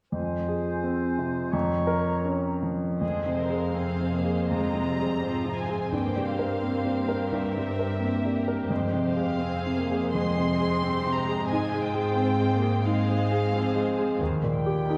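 A brooding, tragic classical excerpt in F minor, moving at a rubato 75-90 BPM in 4/4. A clear concert grand piano carries the melody throughout, sitting up front with a deep bass and long sustain. In the opening bars a dark solo clarinet, a mellow flute ensemble with a pure straight tone, and a solo oboe with light vibrato add brief second lines before dropping out by 2.7 seconds. At 3.0 seconds muted strings enter beneath the piano: con sordino violins add a second line, violas supply veiled accompaniment, and cellos carry the bass from the background, all bowed with vibrato. From 3.4 seconds a distant violin section joins the piano on the melody, reaching up to C6 as the harmony passes through C7/G and Fm/Ab before arriving on Eb. The whole is heard from further back in a concert hall with a reverberant 1.8-second decay, and the passage is cut from a longer piece.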